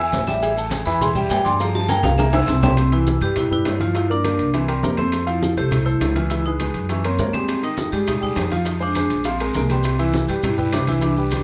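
A brisk, straight Afro-Cuban jazz groove rolls from soft-handed congas, tight high-tuned cowbell and bongos, ringing timbales with agogo bells, grainy maracas and a raspy guiro that drops out at 2.8 seconds and returns at 7.5 seconds, with a drum fill capping the opening vibraphone solo. Up front, a woody, growly pizzicato upright bass holds the low end while a concert grand piano with deep bass accompanies the metallic vibraphone melody and its slow motor vibrato. This sophisticated, danceable excerpt sits in light reverb.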